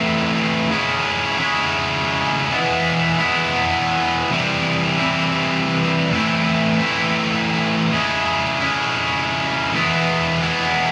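The recording sits in a studio ambience with light reverb, giving the sound a close frame around a single up-front electric guitar. This is a brooding, cathartic rock passage in straight 4/4, cut from a longer piece. The high-gain distorted guitar carries everything by itself from 0.0 to 10.9 seconds, its picked tone bright and thickened by double-tracking. Its range runs from A2 to E4, moving through a chord cycle of Am, C#m, E and C before returning to Am at 6.1 seconds, then C#m and E, which arrives at 9.7 seconds. The saturated edge and doubled attack give the part a heavy, urgent presence that suits its dark yet releasing mood.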